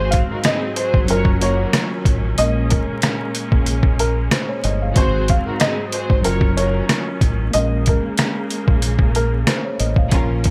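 A dark, woody upright piano carries a brief melody over worn, slightly out-of-tune tine electric piano, deep round fingered bass and two bowed string sections, one lush and intense on sustained chords, the other soft-edged and intimate with delayed stabs. The gritty, pitched-down sampler-style kit joins at 0.1 seconds, up front with a thumpy kick, medium-tuned snare, rim click and hi-hat, driving a moody, tough boom-bap groove at 93 BPM with a light 16th-note swing in Bb minor. Vinyl crackle and a small room ambience frame this short cut, as the harmony cycles twice through Ab7, Ebm9/Gb and Bbm7 before the piano melody stops at 9.3 seconds.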